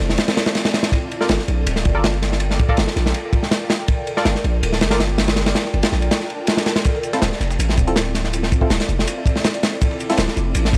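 A crunchy breakbeat kit and a long, deep 808-style sine bass open this atmospheric, frenetic drum and bass and jungle excerpt at 162 BPM, moving over a Dm9 to Gm9 progression. The acoustic breakbeat sits up front with a tight kick, a medium-tuned snare and a dark ride, its saturated, gritty sound rolled off at the top. The bass holds low and long beside it, each note striking fast and then decaying. From 1.2 seconds a muted, detuned sawtooth chord stab hovers in the background, mellow and evolving through a filter sweep, with chorus and dub echo trailing each short hit. A very quiet electronic swell leads into 6.9 seconds, where the harmony returns to Dm9 and a second, compressed sampler-style kit of hi-hat, shaker and snare slips in behind the main drums, overdriven, thinned by high-pass filtering and re-recorded in a small room. The whole recording has a dry, hardware-driven grain and a small-room ambience.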